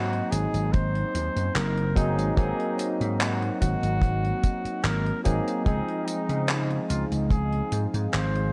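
A straight 4/4 groove from a punchy, up-front slap bass and a dry, tight kick anchors this woozy, dreamy vaporwave excerpt, while a gated 80s drum machine adds handclaps, hi-hat and tambourine coated in sampler grit. A barky tine electric piano with analog chorus carries the Ab9 and Dbmaj7 harmony as a soft-attack flugelhorn with scooped notes sings a jazz-style melody through tape echo. At 6.1 seconds a dark, warbling tape-like pad enters in the background, and the recording carries a nostalgic cassette-tape character.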